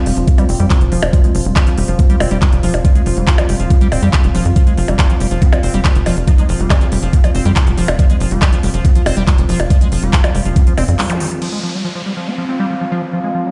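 A squelchy, resonant acid bass riff with dub echo and a warbling, nostalgic pad open this alien, hypnotic psychedelic trance excerpt at 140 BPM, soon joined by an overdriven, knocking kick up front, a punchy sawtooth sequencer bass, a techno kit of smooth hats, handclaps, crash and percussion blips, and a very quiet, juicy blip pluck, with the acid bass's filter sweeping throughout and the pumping parts breathing against the kick until a break at 11.0 s gives way to an electronic zap and downlifter, all bathed in large studio reverb.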